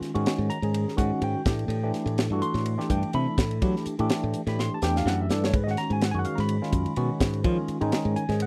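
A tine electric piano with a clean phaser shimmer, a bright, growly fingered bass and a tight funk drum kit with a high-tuned snare all start together in this short, nocturnal jazz fusion groove at 125 BPM in 4/4, with a light swing on the sixteenths. The keys move from G#7sus2 to Am9 and settle on G#m7 at 5.5 seconds, just after a drum fill beginning at 4.6 seconds. The dry, close 1970s-style studio sound keeps all three instruments up front and funky.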